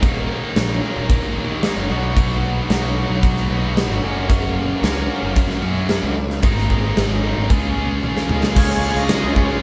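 Lightly reverberant and live-in-one-room, this driving, swaggering classic rock excerpt puts a huge arena drum kit with a punchy kick and a picked, double-tracked distorted guitar riff up front over a fuzz-laden electric bass, and after a drum fill at 8.0 s a crunchy overdriven guitar slips in behind at 8.5 s, joined at 8.6 s by a gritty tonewheel organ melody through a slow rotary speaker and delay, very quiet shouting organ chords on a fast rotary, and a faint grainy tube shaker.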